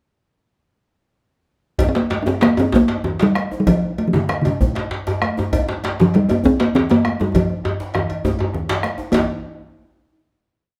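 A resonant, close and dry talking drum leads this powerful, earthy West African drum ensemble piece in 12/8, carrying call-phrase motifs over a cracking, up-front lead djembe, a deep bombo, ringing high-tuned congas, a metallic cowbell bell pattern and a distant djembe with metal rattles, all played live in one room as the tempo speeds up from around 127 to 141 BPM, with a drum fill at 7.3 s before the final note at 9.1 s.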